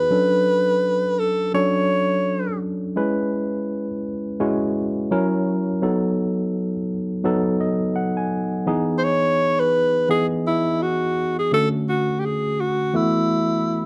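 This soul recording has a dark, warm production in a small room with a wet reverb, and it is cut from a longer piece. At 84 BPM in 4/4, with a light sixteenth-note swing in E major, the mood is lush. A worn, slightly out-of-tune tine electric piano plays the accompaniment throughout, clean and up front with plate reverb, sounding as if heard through built-in speakers, and it adds a fill at 7.2 seconds. A clear alto saxophone carries the melody as an up-front jazz-style solo, with vibrato, subtone and a soft attack, also set in plate reverb. The saxophone opens briefly and falls silent while the chords move from Dmaj7 through C#m7, F#7 and B7 to Emaj7. It then returns at 9.0 seconds as the harmony passes back through Dmaj7 and ends on B7sus4.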